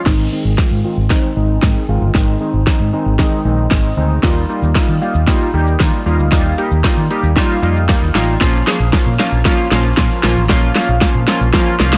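Chorused retro synth keys sit up front in this carefree, summery dance-pop excerpt, their glossy pulse-wave and sawtooth tones bright and fast-attacking, with a filter sweep running across the full 12 seconds as the passage builds. Beneath them, a vintage muted fingered electric bass supplies a dark, round, foam-muted line, and both the keys and bass pump under sidechain compression. The pop drum kit is electronic and layered, pairing a punchy kick and fat, softly clipped snare with metallic hats, shaker and crash cymbal, all carried by a drum fill that spans the build-up. The harmony moves from Ab to Ebadd9 to Bbm, and the synth keys add a fill at 11.8 seconds. The sound is dry and blown-out, with an overdriven edge that pushes the whole mix hard.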